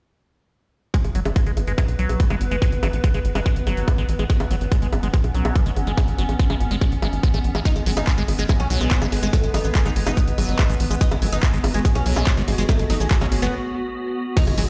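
Driving and intense, this psychedelic trance excerpt runs at 143 BPM in G# phrygian, built on an overdriven, up-front electronic kick and a layered techno kit of bongos, crash cymbal, handclaps and hi-hat, with a tight, punchy sequencer bass, a squelchy, resonant liquid acid bass riff carrying phaser and dub echo, and a swarming, detuned drone of sustained chords pumping under sidechain. At 7.7 s a bright, woody plectrum-plucked oud takes up the melody, treated with phaser, dub echo and sidechain pumping, while a grainy cabasa sits in the background. After a break at 13.5 s, a very quiet electronic impact and a barely audible warbling, lo-fi tape-like pad close the passage, heard as if played on a big sound system in a bare room.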